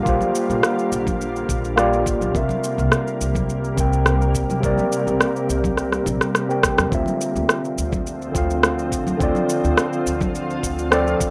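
Warm and smooth, this sunset chillout excerpt rides a straight 4/4 groove, with an up-front, gritty overdriven tine electric piano played through a combo amp, softened by a low-pass filter and delay, over an ethereal, detuned pad that glimmers with octave-up shimmer and chorus. A dark, woody pizzicato upright bass sits beneath a thumpy, tape-warm sampler kick, a layered electronic shaker and rim click pushed forward, and damped, thick-skinned congas tucked in the background. The chords move from Bb6 to C7, and a drum fill at 5.8 seconds leads into a Dm9, all heard through a small room and a rough home-demo mix.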